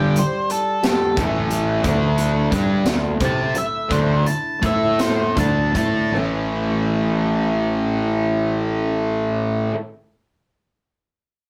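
A rough rehearsal-room recording with a modest small-room reverb, this cut from a longer quiet-loud alternative rock piece in 6/8 feels restless and cathartic. An up-front octave-fuzz lead guitar with a dark, distorted tone carries a solo melody until 6.1 seconds, slowing from 1.8 seconds. Beneath it sit a double-tracked, picked fuzz guitar riff, a round, overdriven fingered electric bass, and a big acoustic drum kit with a punchy kick and medium-tuned snare that stops at 5.9 seconds, while a fingerpicked steel-string acoustic guitar with fresh strings plays arpeggios in the background as the harmony settles onto A for the second section.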